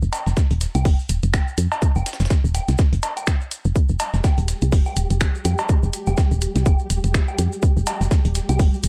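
A tight electronic kick drives a 124 BPM 4/4 pulse with a 57% swing on the 16ths, giving this clinical, sparse minimal techno cut from a longer piece a subtle shuffle over an F5 chord. Up front with the kick sits a soft, round FM bass with a woody tone, a fast attack and a decaying tail, plus sidechain pumping. A dusty soul sampler-style kit adds gritty, tape-warm hi-hat, shaker and a medium-tuned snare, high-pass filtered and pumping, while a garage kit layers finger snaps and bright hats. Cowbell and woodblock trail a dub echo, and mellow, compressed maracas rustle in the background. At 4.1 s a flickering, detuned granular texture fades in slowly and sustains with its own reverb and pumping, inside a dark, dry mix.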